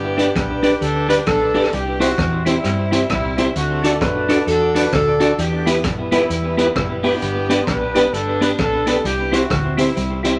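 A horn section and a deep, fingered dub bass open this joyful, bouncy ska excerpt in G major, with guitar, organ and drums joining at 0.2 seconds. The tempo sits at 131 BPM in 4/4 with a swung eighth-note feel, moving through G, C, D and E minor before returning to G and C. Up front, the horns carry the melody with a punchy, present ensemble sound and light vibrato. Beneath them the bass is dark and round, with a foam-muted tone. A clean, picked electric guitar plays accompaniment through a dub echo, while a mellow tonewheel organ adds percussive stabs in the background, colored by key click, chorus vibrato and a fast rotary speaker. The raw garage drum kit uses hi-hat, kick and rim click, sounding gritty and saturated with a punchy kick and a rolled-off top, all set in a moderate studio reverb.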